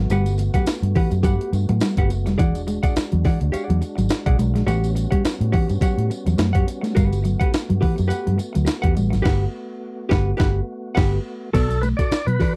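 A gritty, pitched-up breakbeat drum kit with a thumpy kick and high-tuned snare drives this cool 105 BPM funk excerpt, sitting up front beside a round, foam-muted fingered bass, with a lightly swung sixteenth feel over chords moving from Gmaj7 through E9 and A13. A clean, dark fingered electric guitar plays a low riff while a compressed hollow-body jazz guitar comps above it, and a mellow tonewheel organ holds sustained chords through a slow rotary speaker and chorus vibrato in the background, joined by a faint jingly tambourine. After a band accent from 9.3 to 11.5 seconds, the harmony shifts to Bm7 and a full, lightly overdriven organ melody with key click and fast rotary enters at 11.5 seconds, all captured in a dry, close 1970s-style studio sound.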